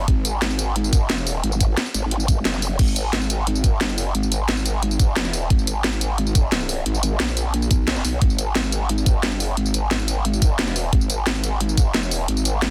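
Dark technical drum and bass at 177 BPM in G# minor, tense and dark, cut from a longer piece that sits in a drop throughout. A growling, saturated bass wobbles through a formant filter with chorus and overdrive, low and detuned, while a knocking electronic kick and a layered kit of cracking snare, bright hi-hats, crash and tambourine sit up front. The kick drops out briefly from 2.5 to 2.8 seconds, and the whole is dry, dense and heavily limited.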